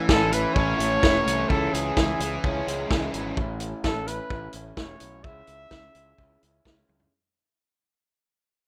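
A straight 4/4 groove from an up-front vintage drum kit with a punchy kick drives this carefree, jangly indie rock fragment, where a slightly broken-up, lo-fi guitar through a small old amp and a compressed, overdriven guitar with analog chorus and slapback echo (heard until 3.4 s) play riffs over a growling, overdriven fingered bass, while a warm, roomy trumpet with vibrato carries the pop-style melody through slapback echo, the rough home demo mix fading out throughout before a drum fill at 6.9 s.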